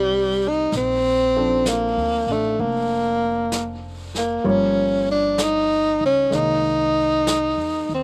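Intimate and smoky, this slow swung jazz ballad at 64 BPM in 4/4 puts a breathy, subtoned tenor saxophone up front with vibrato, scooped notes and a slapback echo, while a clear grand piano with audible action noise comps in the background over chords moving from F13 to C7alt, a woody pizzicato upright bass holds the low end, and a vintage brush kit with a rolled-off top enters at 0.7 seconds, all in a dry, open-air sound with little reverb in this short cut from a longer piece.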